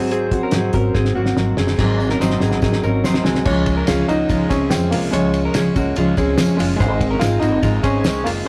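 Youthful and bright, this short cut from a longer jangly indie pop piece moves at 144 BPM in a straight 4/4, centered on D-flat major and tuned slightly flat of standard pitch at A4 = 439 Hz. A clear, worn upright piano, slightly detuned and woody, carries the melody, while a fingerpicked dreadnought acoustic guitar supplies warm accompaniment and a clean, direct-recorded electric guitar adds compressed, picked arpeggios. Underneath, a pizzicato upright bass with steel strings sounds thumpy yet bright, and a cloth-damped drum kit sits up front with a fat snare, tight kick, dark cymbals and a rolled-off top, playing drum fills from 1.0 to 1.8 seconds and again from 1.8 to 3.5 seconds. A jingly, vintage-toned tambourine joins at 2.0 seconds, tucked in the background. The harmony moves from an A-flat seventh through D-flat at 3.5 seconds and back to A-flat at 6.8 seconds, all set in a rough rehearsal-room recording with moderate studio reverb.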